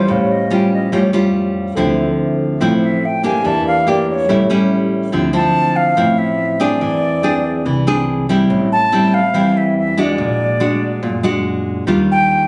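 Captured on a phone in a club-like room, this compressed, reverberant clip of a smooth, melancholic bossa nova is cut from a longer piece. An airy, reedy concert flute with a straight, tongued tone sits up front with plate reverb, taking a solo for the first 5.1 seconds while a clean tine electric piano plays through its built-in speakers before dropping out at that point. A full-bodied, fingerpicked nylon-string guitar, up front with audible finger squeak, and a woody, growly pizzicato upright bass carry the accompaniment through altered and extended chords to the end at 12.5 seconds.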